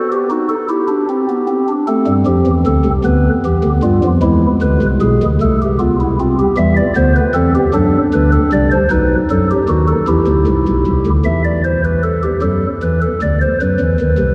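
A lone chamber organ on a stopped flute stop opens this baroque-style three-part fugue in A minor, its soft, hollow tone with a distinct chiff sitting up front within a long, wet cathedral reverb. The mood is serious and driving at 51 BPM in a straight 6/8, with the mellow voicing spanning from B1 to E5. The excerpt, cut from a longer piece, moves through dark minor and diminished harmonies and comes to rest on a B chord at 13.6 seconds.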